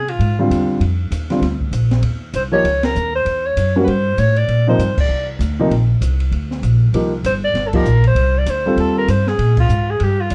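Sophisticated and warm, this brief cut of small-group swing and bop moves at 196 BPM in Bb mixolydian, with a breathy, whispered alto saxophone carrying the melody over a woody, thumpy pizzicato upright bass and an open jazz kit of dark cymbals, high-tuned snare and boomy kick. A concert grand piano with deep bass and short sustain joins at 0.4 seconds, moving through chords such as Bb13, Em6 and F13, while the band punches out accents along the way. Light reverb and a dark, warm production keep the sound mellow.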